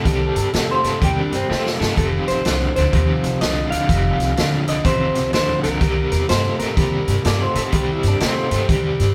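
Recorded live in one stone room with moderate reverb, this soulful, laid-back electric blues shuffle sets a biting, overdriven guitar riff with tremolo over woody, growly pizzicato upright bass and a swinging big-band drum kit with a punchy kick that drops a fill at 1.5 seconds, while a lo-fi, slightly broken-up guitar through a small old amp carries a picked melody from 1.8 seconds and a darker, fingered one adds a brief second line at the opening and again near the close.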